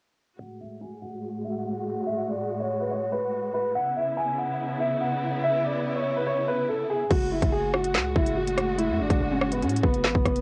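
Drill hip hop in F# minor at 143 BPM with a half-time feel, this dark, menacing fragment cut from a longer piece opens on a mellow, boxy concert grand piano carrying the melody between B3 and G#5, its long sustain sitting up front. Beneath it, a lush symphonic string section holds sustained chords with vibrato, soft attack and expressive portamento, moving from F#madd9 to C#m7 while a filter sweep runs through the opening section until 7.1 seconds. Both piano and strings are low-pass filtered and colored by cassette tape, giving the home-recorded sound a hazy character under light reverb. At 7.1 seconds the harmony returns to F#madd9 and a produced electronic drill kit arrives with a hard-clipped kick, woody snare, crisp hi-hats, rim clicks, handclaps and crash cymbal, tape-warmed and up front. A punchy, heavy 808-style bass enters alongside it, its sine tone with a noise layer striking with fast attack and decaying low between F#1 and A2.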